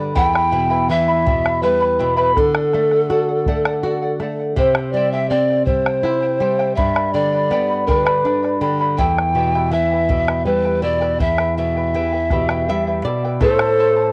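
Festive yet wistful, this Andean folk excerpt in E minor moves at 82 BPM in a straight 3/4, cut from a longer piece and heard through the soft grain of a home cassette recording with light reverb. A mellow, hollow pan flute carries the melody up front with vibrato and a tongued chiff, over fingerpicked accompaniment from a shimmering charango with double strings and a bright flamenco guitar, while a deep, dry bombo anchors the rhythm as the chords pass from Em through D, C and G. The guitar adds a fill from 12.3 s, and at 13.4 s a breathy, close-miked large quena enters as a second line just as the harmony turns to Am.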